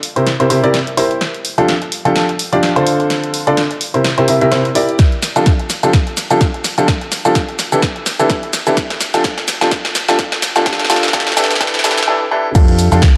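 Feel-good and joyful, this piano house excerpt is a swung build-up in which a clear, woody, slightly detuned upright piano riff with short sustain, sidechain pumping and digital delay sits up front while a filter sweeps across it and the chords cycle through C7, F69, Dm7 and C. A punchy analog drum machine with crash cymbal, hi-hat, shaker and snare plays a drum fill throughout, supported by a round, very quiet fingered electric bass. At 5.0 s a layered electronic kick drum joins up front, all within a dark production and moderate plate reverb.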